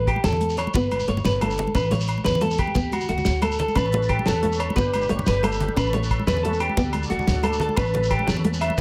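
Joyful highlife guitar band groove in 12/8 at 119 BPM in A mixolydian, cycling A, G, Aadd9 and D, with a bright, twangy electric guitar playing picked arpeggios up front through spring reverb and slapback echo, a full-bodied fingerpicked nylon-string guitar with audible finger squeak, a woody, thumpy pizzicato upright bass on gut strings, a dark, dry soul drum kit with fat snare and tight kick, hard-handed close congas, ringing agogo bells, a grainy, distant shekere, and a lightly overdriven tonewheel organ joining at 3.8 seconds with slow rotary speaker and chorus vibrato on sustained chords.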